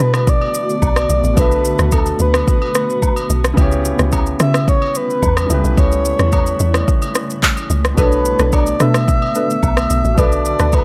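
Amapiano with a soulful, hypnotic pull, heard as a short cut from a longer piece in straight 4/4 time. A woody, punchy log drum bass with a fast, decaying attack sits up front beside a deep house drum kit of handclaps, rim click, shaker and a deep kick, while distant agogo bells and woodblock ring out from a large room. A warm concert grand piano plays intimate accompaniment with audible action noise and long sustain, and a granular cloud pad adds blurred, evolving sustained chords, soaked in its own reverb and pumping against the beat. Over this, a soft, breathy, flute-like synth lead carries the melody with vibrato, chorus and tape echo. At 8.0 seconds a dark, mellow chord stab with chorus joins in the background as the harmony moves through Bm7, C#m7b5 and A7 before returning to Bm7, all within a dry, gritty digital ambience.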